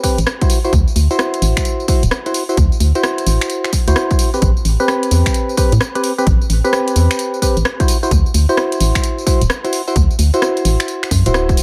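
A nasal, chorused organ stab with a tape echo opens this soulful, late-night two-step garage excerpt at 130 BPM, alongside a punchy, overdriven electronic kick, a house kit of finger snaps, hi-hat, rim click and tambourine re-recorded in a large room, and a barely audible downlifter that ends by 0.7 seconds. From 0.2 seconds a dark, hollow FM bass with an organ-like, percussive bite sits up front as the swung 16ths carry chords moving from D9 to Am9 and back to D9. The mix is dry, with the bass the loudest part.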